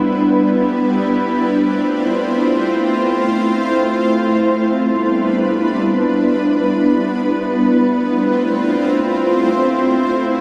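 This hip hop passage, cut from a longer piece, unfolds in free time in F lydian with a floating, blissful mood. A single shimmering ambient pad plays alone throughout the 10.4 seconds, its dark, detuned sine tone carrying an ethereal octave-up sheen, slow attack and long release, coloured by chorus, built-in reverb and a diffuse ambient delay while sitting up front. The chords move between Em7 and Fmaj7, and the whole mix is soaked in a lush hall reverb that gives it a dreamy glow.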